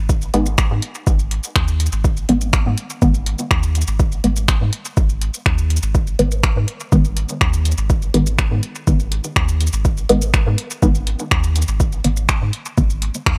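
Hazy and deep, this dub techno fragment moves in a straight 4/4 metre, cut from a longer piece and holding a single section for its 13.4 seconds. A soft, round sub bass built from triangle and square waves sits underneath from the very start, its fast attack and sustained tone pumping against the sidechain. An overdriven electronic kick enters at 0.1 seconds, placed up front with a deep, layered body that was re-recorded in a small room. Alongside it, a deep house kit of finger snaps, hi-hat and shaker carries its own overdrive, and its hits trail off into dub echo. From 0.3 seconds a muted, full-bodied chord stab of detuned sawtooths plucks with a short decay, mellowed by phaser, sidechain pumping and dub echo while a filter sweep runs across it. The mix stays dry and close, with little reverb.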